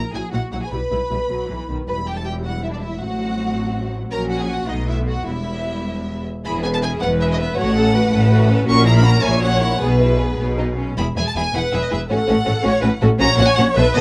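A quick classical-period movement for string orchestra in a graceful, spirited, rubato 6/8, with a rich, expressive violin section singing the melody over an even, lightly vibrato second violin line, a lush, focused viola accompaniment, and a bass of warm, smooth cellos and clear double basses, captured through close, detailed microphones with light reverb, and a new phrase beginning at 6.5 s.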